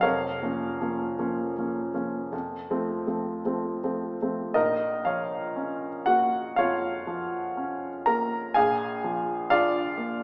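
A warm, present baby grand piano sits up front in this elegiac, yearning classical fragment, moving in a slow, rubato 4/4 at roughly 52-64 BPM and reaching from low F1 up to Bb5. Its harmony drifts from Bbm over F to F, then opens into a new passage at 4.6 seconds on Bbm before turning to Bb7 at 8.6 seconds. The instrument rings out in a wet recital-hall reverb with a 1.5-second decay, recorded in a church or concert-hall setting and heard through a small-speaker sound.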